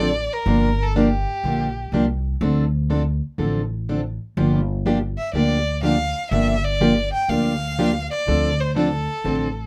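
Acoustic string swing in the jazz manouche style moves at 123 BPM in 4/4 with a swung eighth-note feel, its mood swinging and bittersweet in this brief cut from a longer piece. A single bowed violin carries the melody with a rich, focused tone and vibrato, set in plate reverb; it sounds from 0.0 to 1.9 seconds, drops out, then returns at 5.2 seconds. A picked, plugged-in steel-string acoustic guitar with fresh strings and a parlour character supplies the accompaniment, sitting up front and slightly louder than the other parts. Underneath, a pizzicato upright bass gives a woody, growly low end in a dark register. The harmony moves between Gm7 and Dm7, and a light reverb surrounds the trio.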